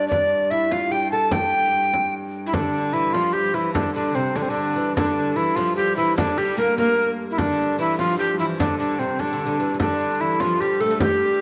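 Ancient and driving, this medieval dance in a straight 6/8 is cut from a longer piece. A breathy, bright tenor recorder carries the melody up front, its woody tone marked by vibrato, a crisp attack and a touch of chiff. Beneath it, a plucked oud with fretless, double-stringed woodiness plays a second line, while a dark, wheel-bowed hurdy-gurdy holds a low drone on G and a close, dry frame drum keeps the percussion going. At 2.5 seconds a clear viola da gamba joins in the background with another second line, its gut-string tone biting and reedy with light vibrato and an airy bow. The whole ensemble sits in a wet echo-chamber reverb that lends the dance a spacious glow.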